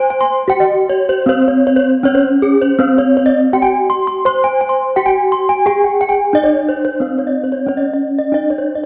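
Set in a straight 4/4 pulse that moves between 77 and 91 BPM, this short gamelan passage in C pelog has a ceremonial, shimmering character and is cut from a longer piece. Two gamelan-type bronze metallophones carry the whole excerpt, both struck with wooden mallets and tuned in pairs so that their ringing tones beat and shimmer against each other. One metallophone holds the melody between C4 and C5, sitting mid-forward and up front in the mix. The second plays arpeggios that reach as high as C6, entering at 0.1 seconds and sounding a touch lower in level than the melody. The metallic bronze sound is placed on a dark, warm production with a generous scoring stage reverb, and after an opening passage the music shifts into a new section at 7.0 seconds before closing around 8.9 seconds.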